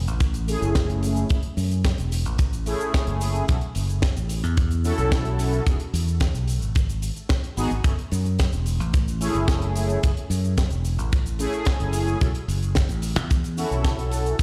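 A straight 4/4 nu-disco groove at 110 BPM in F# minor, cut from a longer piece, sets a tight, up-front acoustic kick and a funk kit of hi-hat, shaker and high-tuned snare under a bright, growly fingered electric bass with sidechain pumping, while a mellow, brassy synth brass part entering at 0.5 seconds adds round, detuned sawtooth tone with chorus, phaser, vibrato, filter sweep and dub echo over a F#m7, B7sus4 and E progression, all carrying a cosmic, sleek mood in a dry mix with a stone-room character.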